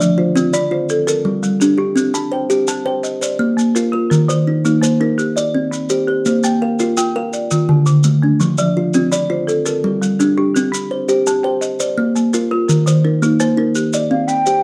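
A dark, moderately reverberant production frames this hypnotic Southern African traditional excerpt in Bb major at 112 BPM in 12/8, where an up-front kalimba with a hollow, woody thumb pluck and a dry, rustic folk marimba weave interlocking mbira-style arpeggios over softly grainy maracas through a cycle of chords such as Gm, Eb5 and Cm, before an airy baroque flute with vibrato slips in with a brief melody at 14.1 seconds just as the excerpt cuts off.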